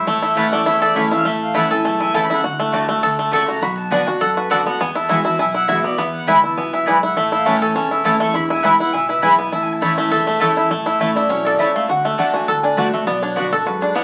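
A lively, virtuosic bluegrass excerpt in A major at a brisk 203 BPM opens with a bowed fiddle taking a solo, its reedy, gut-string tone sounding distant through the first 10.7 seconds. Beneath it, a banjo played with fingerpicks sits up front with twangy, percussive arpeggios, while a jumbo steel-string acoustic guitar adds bright, full-bodied picked accompaniment, complete with finger squeak from fresh strings. A double-strung mandolin joins at 0.4 seconds with woody picked stabs, and a pizzicato upright bass on gut strings thumps along in the background. At 11.2 seconds a lap resonator guitar takes over the melody, its slide playing both metallic and nasal yet mellow. The whole band sits in a wet club reverb and sounds like a very old 78 rpm record, with vinyl crackle and a dulled top end.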